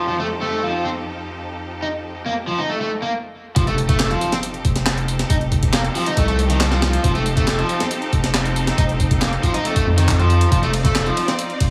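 An overdriven semi-hollow guitar sits up front with a bright, picked riff soaked in tape echo, riding over a distant, lush bowed string section whose sustained chords, opening on F7, carry 12-bit sampler grit and sidechain pumping in this energetic, funky breakbeat cut at 138 BPM. A layered house kit of handclaps, hi-hat and ride plays under low-pass filtering and sounds re-recorded in a large room. After a brief stop from 3.1 seconds, the drop hits at 3.6 seconds with a very quiet electronic impact, a deep, thick saturated sub bass and a compressed, pitched-up, gritty sampler-style breakbeat kit with a thumpy kick and medium-tuned snare, all set in a small digital room reverb.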